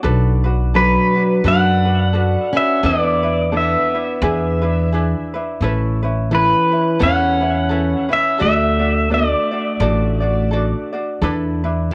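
A home cassette recording in a small room with light reverb carries this languid, relaxed Hawaiian excerpt with a gentle swing: a bright, light, fingerpicked ukulele and an up-front, woody pizzicato upright bass on steel strings play from the start, a picked parlour steel-string acoustic guitar adds a second line from 0.8 seconds, and an up-front, clean, compressed electric pedal steel carries the warm melody with fingerpicks, slide, volume swells and tape echo from 0.8 to 10.5 seconds.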